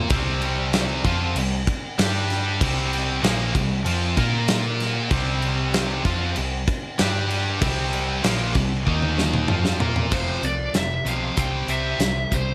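Two bright, high-gain distorted guitars, one up front and one scooped, open this energetic hard rock excerpt at 96 BPM alongside a dark, round hollow-body bass and a big, punchy drum kit with a rolled-off top, moving through power chords such as C5, G5 and Bb5 before a drum fill at 8.9 seconds leads to a new section at 10.1 seconds, where a distorted lead guitar with slapback echo enters over a small-room ambience.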